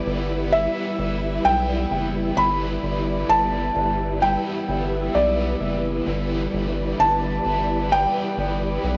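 Opening this ethereal, dreamy dream pop fragment over a G6 chord, a soft, felt-muted upright piano carries the melody with audible action noise and tape echo, joined at once by a bright, double-tracked overdriven guitar with tremolo, a silky string machine holding slow-attack chords through ensemble chorus, and a dark, clean electric guitar playing background arpeggios in lush chorus and tape echo, while a round analog bass with a filter pluck and fast attack enters at 0.1 seconds, set in light reverb and digital ambience on a home cassette recording.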